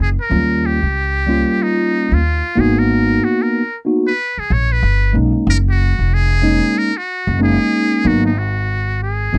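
A buzzy, thin trumpet with a metal mute carries the jazz-style solo melody up front, its breathy tone shaded with vibrato, soft attacks and scooped notes. It sits over a woody, thumpy pizzicato upright bass on gut strings and a mellow tine electric piano with a phaser, which enters at 0.3 s with clean chords moving through D#9, G#m9 and F#69. This cool, smoky hip hop fragment, cut from a longer piece, swings its sixteenths and has light reverb and a cassette-tape sound.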